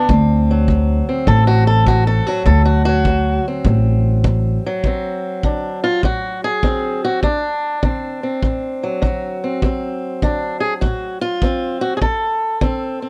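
A dry excerpt with little reverb captures a rollicking yet laid-back acoustic country blues in D mixolydian, swinging at 100 BPM in 4/4 and tuned slightly sharp to A4 = 443 Hz. Up front, a dark, boxy fingerpicked swing-style acoustic guitar carries the melody over a D7 chord and takes a solo through the opening 4.8 seconds, while a woody, thumpy pizzicato upright bass sits alongside it until 4.6 seconds. Further back, a distant, roomy kick drum with a punchy attack and brushes keeps time until 12.8 seconds as the piece moves into a new section.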